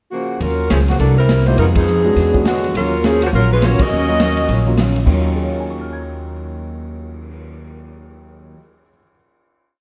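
Big band swing in Eb minor at 206 BPM, this brassy, swinging piece opens on a pickup into a mellow, up-front saxophone section playing a motif-based melody in four-part block voicing with vibrato, over a woody pizzicato upright bass in a two-feel, a drum kit with a punchy kick driving a ride cymbal pattern and backbeat, a background dreadnought acoustic guitar strumming jazz chord shapes with finger squeak, and a grand piano entering at 1.5 s with syncopated rootless comping, band accents landing at 1.7 and 3.8 s before a final chord from 5.1 s in a dark production with light reverb.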